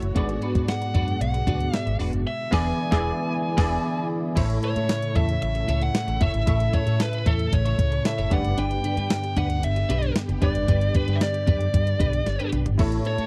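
A thumpy, fat-snared 12-bit drum machine sits up front in this moody, urgent 1980s-style pop excerpt at 114 BPM, with crash, hi-hat, tambourine and toms, joined by a round, foam-muted fingered bass and a bell-like tine electric piano playing chorused accompaniment. A twangy, compressed twelve-string guitar riff with tape echo and a swirling, warbling phased string machine holding sustained chords in the background fill out the dry, close sound. From 0.7 seconds, a bluesy overdriven lead guitar carries the melody over chords moving from G#m7b5 and E7 to A and G, with a band accent at 2.3 seconds and a drum fill at 12.3 seconds.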